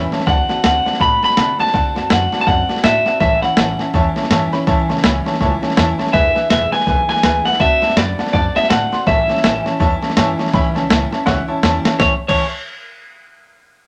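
An upbeat, retro rockabilly excerpt at 164 BPM in A mixolydian, swinging its eighths over D7, A7 and E7 changes. Twangy, slightly broken-up electric guitar through a small old amp carries the melody up front, resting between 3.9 and 6.1 seconds, while a clear, slightly detuned upright piano, a bright dreadnought acoustic guitar and a woody, gut-strung pizzicato upright bass fill out the accompaniment. A gritty, tape-warm boom bap sampler-style kit with a thumpy kick and compressed punch sits prominently in a moderate studio reverb and drives into a fill at 11.3 seconds before the section changes at 12.0.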